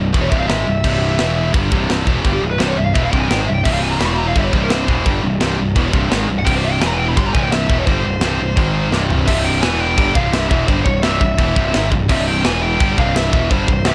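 A bluesy, darkly distorted lead guitar solos from 0.2 seconds through the first section, which runs until 9.3 seconds, riding high above a dense heavy metal riff in this dark, epic fragment cut from a longer piece. Two bright, high-gain distorted rhythm guitars sit in the background playing the riff, joined by a very quiet, double-tracked overdriven semi-hollow guitar with a warm hollow-body tone. Up front, a growly fuzz bass with overdrive drives the low end, while a tight acoustic metal kit with a medium-tuned snare, tight kick, toms, crash and china cymbal plays with a rolled-off top and a drum fill from 8.9 seconds leading into the second section. The music moves at a straight 171 BPM in 4/4, tuned to A4 = 436 Hz, cycling mostly between C and E5 with a brief turn through Ab5 and C5. The mix is dry, with little reverb.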